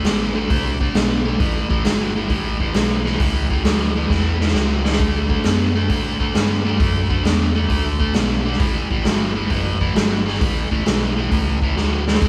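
A swung 4/4 groove at 133 BPM drives this swaggering blues rock and southern rock excerpt in A mixolydian, with a raw garage drum kit up front: punchy kick, medium-tuned snare and a dark, rolled-off top, plus fills at 4.1 and 11.8 seconds. A sludgy, overdriven guitar riff, picked and double-tracked, sits forward in the mix over a growling fingered bass that is also overdriven, moving through D5, A7, D and back to A7. The power trio plays live in one moderately reverberant stone room, giving the sound a warm, driving, gritty feel.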